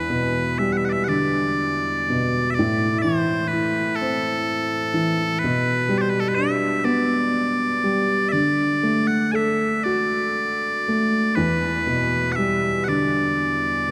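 Bagpipes and a felt-muted upright piano sound together from the very start of this short excerpt, a Celtic slow air with a nostalgic, pastoral mood. The bagpipes carry the melody up front in a loud, piercing, continuous line, while the piano plays a soft, mellow accompaniment that feels close and intimate. The pulse is slow and rubato in 6/8, moving at about 39-42 beats per minute counted in dotted quarters. The harmony passes from Em7 through Am, G/B and D before returning to Em7 at 11.4 seconds. A cathedral reverb with a long 4.6-second decay surrounds the sound, lending the air a spacious, wet glow until it breaks off at 13.9 seconds as part of a longer piece.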